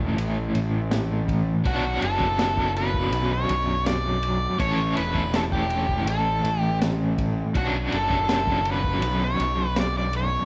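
An overdriven, double-tracked electric guitar riff with tremolo opens this mysterious, hypnotic psychedelic rock excerpt in B minor at 81 BPM, joined at once by a punchy fuzz bass and, at 0.2 seconds, an acoustic breakbeat kit with a high-tuned snare, dark cymbals and a rolled-off top. From 1.7 seconds an up-front octave-fuzz lead guitar carries the melody with distortion and slapback echo, while the harmony sways between A and Bm. Light reverb gives the whole a small-room ambience.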